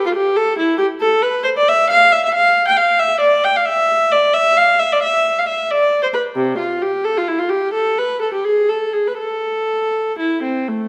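Classical, baroque-style suite movement for unaccompanied viola, grave and introspective in a rubato 12/8, with a single bowed viola played up front in period style, its gut-string tone reedy yet smooth at the top, ranging from C3 to G5 inside a moderate recital-hall reverb in this fragment cut from a longer piece.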